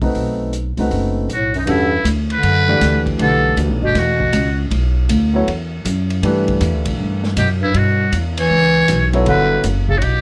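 A buzzy, metal-muted trumpet with raspy, scooped notes leads this intense, cool modal jazz excerpt at 158 BPM in E dorian, entering at 1.3 seconds alongside a mellow, distant bass clarinet second line over a polished grand piano, a woody, growly pizzicato upright bass and a muffled, lo-fi vintage drum kit that swings, as the harmony moves from B7b9 to Em9.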